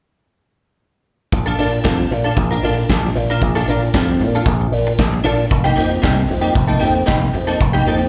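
Disco at 115 BPM in Bb major, glamorous and celebratory, cut from a longer piece and heard as a live gig through the venue's PA with club reverb and a small room ambience. From 1.3 seconds a growly, bright slap bass with an envelope filter drives up front alongside a modern drum kit with a punchy kick, a medium-tuned snare, hi-hat and a pumping room sound. A clean, compressed, picked electric guitar with ensemble chorus and slapback echo plays a Bbmaj7 chord, shifting to F9sus4 at 5.5 seconds.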